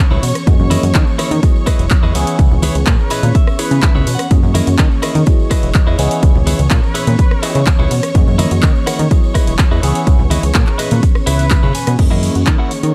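An overdriven, layered kick drum sits up front in this sensual, groovy slice of filtered disco house, joined by a punchy, funky analog bass with a fast, decaying filter pluck, a dry overdriven analog drum machine with handclaps, hi-hat, ride, crash and rim clicks, and very quiet congas and tambourine played with soft hands. A worn, slightly out-of-tune tine electric piano through a combo amp with phaser, a compressed, picked clean electric guitar riff with fills at 2.9 and 11.3 seconds, and lush bowed strings with vintage sampler grit all pump under the sidechain and a low-pass filter over a cycling F#13, Emaj7 and C#m7 progression. At 3.0 seconds and again at 10.7 seconds a distant, roomy trumpet section holds a dark, tight line in the background, all within a dark, warm production with little reverb.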